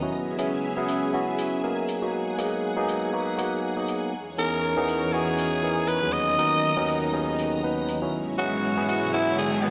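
A light swing on the sixteenths gives this nu-disco excerpt a loose, sensual glide in steady 4/4, with an electronic hi-hat ticking metallic and tape-warm from 0.4 s. A barky, clean tine electric piano sits up front carrying the accompaniment through chords moving from E6 to G#m7 and Bmaj7, dressed in lush chorus and analog delay. Beneath it, a vintage string machine holds full, slow-attack sawtooth chords with a sub octave and ensemble chorus. At 4.4 s a breathy tenor saxophone enters as the solo voice, raspy and gritty with vibrato, punchy and present, trailed by a diffuse ambient delay. An electronic riser creeps in from the background at 9.0 s, and the whole sleek, dreamy mix is soaked in a plate reverb.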